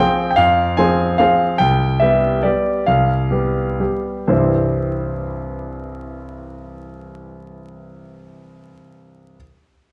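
A classical piano waltz in 3/4, elegant and graceful, with a rubato feel in C major and a tempo that moves between 118 and 153 BPM. A bright concert grand piano plays solo for the whole 9.4 seconds, ranging from C2 up to Ab5, its tone brilliant and polished with deep bass, short sustain and an up-front presence. The music slows down from 1.0 to 4.3 seconds, moving from F minor to a G7 over C, then settles on C major as a second section opens at 4.3 seconds. A moderate recital hall reverb surrounds the playing, and the overall production is dark and warm, with a layer of vinyl crackle. This short piece is cut from a longer work.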